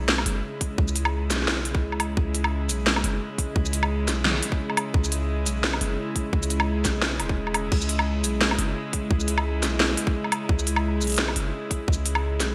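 A lush hall reverb and bright 1980s-style digital sheen frame this dark, spacious half-time drum and bass fragment, cut from a longer piece and resting on a single minor chord throughout. A close, floating chamber string ensemble holds soft-attack, sul tasto chords that pump against the sidechain, while a deep, mellow 808-style bass sustains long, sine-like notes beneath. Up front, a tape-warm drum kit brings a cracking snare with gated reverb, crisp hi-hats, shaker, woodblock and crash, and a tight, layered electronic kick joins at 0.6 s.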